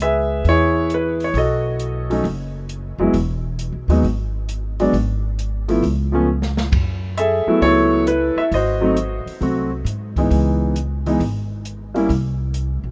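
A swung eighth-note feel in four carries this smoky, moody jazz piano trio passage, cut from a longer performance. A clear concert grand piano sits up front with the melody, its natural tone showing deep bass and long sustain. The pizzicato upright bass is also up front, woody and warm with steel strings. Behind them, an acoustic drum kit in a small room plays hi-hat, ride, snare and kick, with dark cymbals, a medium-tuned snare, a boomy kick and a rolled-off top, plus a drum fill at 6.3 s. The changes move from C#m7 through B7 and E to a brief chordless gap, then F#m11 and G#7b9 before returning to C#m7. The piano stops at 12.1 s and the bass rings on to 12.9 s, all in a dry sound.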